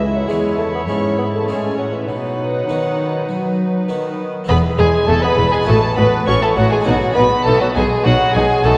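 Festive and lively, this baroque-style concerto movement at 101 BPM sets a mellow bassoon melody against a rich, gut-string violin section carrying the high line and a second violin part, with a brilliant, dry harpsichord and warm viola section in the background, a distant cello bass joined by the double bass section at 4.5 s, all steeped in a wet church reverb and the warbling pitch drift of worn cassette tape as the chords move from C#m to a closing B7.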